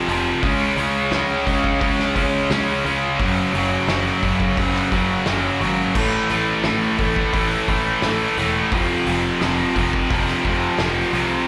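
A small room ambience colours this live club recording, heard as if through the venue's PA with a touch of club reverb, and the fragment is cut from a longer piece. It is quiet-loud alternative rock in a straight 4/4 at 87 BPM, restless and bittersweet in mood, moving through the chords C#5, F#5, A5 and F5 across its 11.5 seconds. Three picked electric guitars play the riff together from the first moment: a biting, overdriven one sits up front with a slapback echo, a heavy high-gain guitar adds bright distortion, and a double-tracked high-gain guitar with both distortion and slapback echo stays in the background. Beneath them, a growling fingered electric bass, direct and amped with overdrive, carries the low end from 0.1 seconds. A loose, distant indie drum kit with a roomy acoustic sound, a fat snare and a punchy kick, along with crash cymbal and hi-hat, drives the passage until 11.3 seconds.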